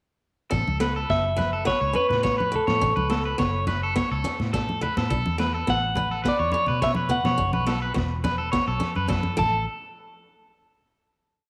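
Sunny and warm, this short highlife guitar band piece in A major moves at a straight 105 BPM over Aadd9, Bm7 and F#m chords. A woody, boxy archtop acoustic guitar with old strings picks an ostinato, while an up-front, twangy electric guitar at the edge of break-up repeats bright arpeggios through spring reverb and slapback echo. A round, punchy muted bass plays a syncopated riff, a gritty, saturated breakbeat kit with dark cymbals and a tight kick grooves, and thin-skinned, low-tuned congas play a loose pattern in the background, all in a moderate echo-chamber reverb. A clean electric guitar enters at 1.1 s with motif-based melody phrases, and a drum fill from 9.0 s leads to a final hit at 9.7 s.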